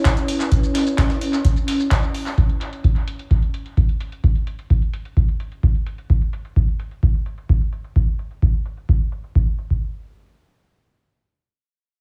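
Acid house with a hypnotic, driving feel, this clip is cut from a longer piece and rests on a single C#m7 chord. A deep, up-front electronic kick anchors the groove, carrying a small-room character, while a booming analog drum machine adds metallic hats, handclaps and shaker, filtered and treated with tape echo under a filter sweep. For the opening moments a gritty, pitched-up breakbeat kit with a medium-tuned snare sits in the background, high-passed and pumping before it drops out at 2.3 seconds. A thick, airy sawtooth unison pad holds sustained chords with chorus, phaser and sidechain pumping, its filter sweeping until it stops at 6.1 seconds. Alongside it, a nostalgic, lo-fi pad with a warbling, mellow tone drifts in the background until 2.4 seconds. The mix leans heavily on echo with a small room reverb.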